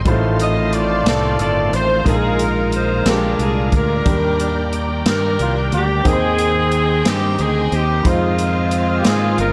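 A bright saxophone section carries the melody from the first moment over clear concert grand piano, a lush bowed string section and a round, punchy fingered electric bass, setting a jubilant, hopeful tone for this slow gospel passage at 60 BPM in a straight 6/8. At 0.1 seconds a full, shouting tonewheel organ joins in the background with sustained chords, lightly overdriven and coloured by key click, chorus vibrato and a slow rotary speaker, while a swinging big-band drum kit brings in hi-hat, a punchy kick and a medium-tuned snare with an airy, polished hall sound. A mellow solo trumpet enters at 1.1 seconds on a second melody line, sounding distant and roomy, with scooped notes and a gentle vibrato in a jazz style. The saxophones and the dark, amped bass sit up front, the piano adds its deep bass and long sustain, and the strings stay in the background with expressive portamento and a smooth top. 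The chords move from F7/A through Bb7sus4 and Bb7 to Ebmaj7, Abmaj7/Eb and Fm7, all bathed in studio reverb, and the passage is cut from a longer piece.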